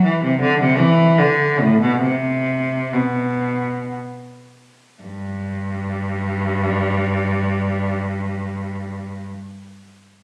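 Serene and dance-like, this excerpt from a baroque-style suite movement features a single unaccompanied cello, bowed with a rich, focused tone and vibrato, sitting up front in its low register from 0.0 to 9.3 s in a flexible, rubato triple metre that slows through the opening 5.0 seconds, heard in a phone recording of a wet recital hall with added studio reverb and compression.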